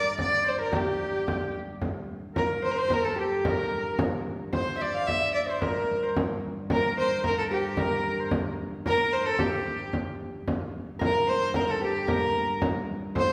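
A dark, bowed fiddle carries the melody up front from the start in this driving, mysterious medieval dance in G dorian at 111 BPM, over a woody, fretted viola da gamba drone on G2 and a fingerpicked, ringing Celtic harp in the background. A bright shawm with light vibrato and scooped notes adds a second line in the background until 9.9 seconds, while a frame drum played with soft hands enters up front at 0.2 seconds. The whole ensemble sits in a wet recital-hall reverb, and the passage is cut from a longer piece.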